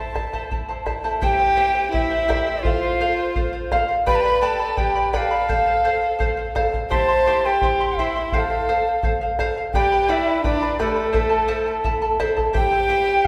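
A cane quena and a charango open this wistful, melancholic Andean folk piece together, the quena carrying the melody with an airy, tongued tone and gentle vibrato, close-miked so every breath feels near. The charango sits up front as accompaniment, its fingerpicked double strings bright and shimmering, with some strings doubled at the octave. A deep acoustic bombo joins at 0.2 seconds, close and low in the mix, marking a steady 85 BPM in a straight 2/4. At 1.2 seconds a single bowed violin enters with a second line, dusky and intimate, its soft attack and light vibrato lending a hushed, close presence. The harmony circles through A minor, C, F and G, tuned to A4 = 441 Hz, while a wet recital-hall reverb of a church or concert hall surrounds the ensemble. The recording is cut from a longer piece, ending on a C chord.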